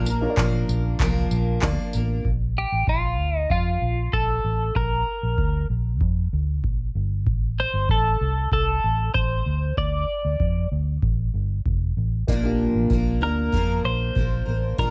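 This sunny, carefree acoustic pop piece in Bb major opens with a bright, clean twelve-string electric guitar melody, colored by phaser and plate reverb, over a round, foam-muted bass, a full-bodied picked steel-string acoustic guitar, a woody upright piano with audible action noise, and a booming analog drum machine of deep kick, handclaps and tambourine. At 2.3 seconds the piano and acoustic guitar drop out, leaving the guitar, punchy bass and tape-warm beat to carry a relaxed 96 BPM through a move to Gsus4 and Dm. The piano and acoustic return at 12.3 seconds as the harmony settles back on Bb, all under a light reverb and a soft top end.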